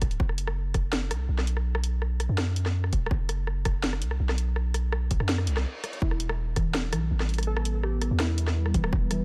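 Half-time drum and bass in E minor at 165 BPM, spacious and cinematic, this excerpt opens with an up-front, hard-clipped electronic kick, a layered kit with cracking snare, hi-hat and rim click, and a deep, mellow sine 808-style bass over a rootless Esus2, before a reverse cymbal and brief break lead into Em at 6.0 seconds, where a warbling, lo-fi, detuned pluck plays chorus-and-delay arpeggios and, from 7.2 seconds, a moody, full-bodied pad with sidechain pumping sustains chords in the background.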